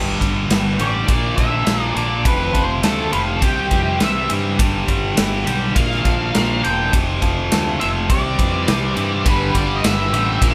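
An octave-fuzz lead guitar carries a dark, distorted solo melody from 0.8 seconds in this bittersweet, restless alternative rock excerpt at 103 BPM in 4/4, cycling through G, Bb, F and C. Up front, a scooped high-gain guitar picks out a bright riff while a big acoustic drum kit, with punchy kick, medium-tuned snare and bright ride, drives the straight groove, underpinned by a growly, overdriven fingered bass. Tucked in the background, a twangy clean guitar plays compressed arpeggios through a phaser, and a second fuzz guitar riff joins at 9.2 seconds, all sitting in a moderate room reverb like a band playing live together.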